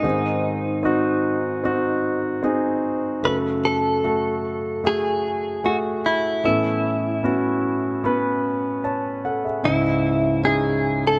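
A warm concert grand piano anchors this melancholic, longing pop fragment, cut from a longer piece. Its intimate, polished tone carries deep bass, long sustain and audible action noise as it accompanies across a range from C#2 to A5. A clean electric guitar, recorded direct, picked and compressed, sits up front alongside it, carrying the melody between D#4 and B4 through a lush chorus. Both instruments play together from 0.0 to 11.2 seconds at a straight 75 BPM in 4/4, tuned to A4 = 436 Hz. The harmony moves from G# through F#madd9 and Aadd9 to C#madd9, and a moderate plate reverb with a 3.0-second decay surrounds the sound with a lingering space.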